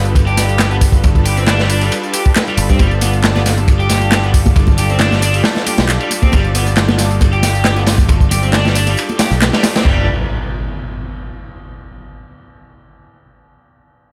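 A straight 136 BPM breakbeat groove in 4/4 drives this funky, gritty excerpt, with a saturated, up-front acoustic breakbeat kit of tight kick, medium-tuned snare and dark cymbals layered with a tape-warm house kit of handclaps, hi-hat and tambourine, while a growly, punchy picked electric bass sits under a lush detuned sawtooth pad sustaining a G7 chord with chorus and sidechain pumping. An overdriven picked guitar riff is bathed in spring reverb and digital delay, soft-handed congas enter in the background at 2.8 s, and an electronic impact lands at 9.9 s.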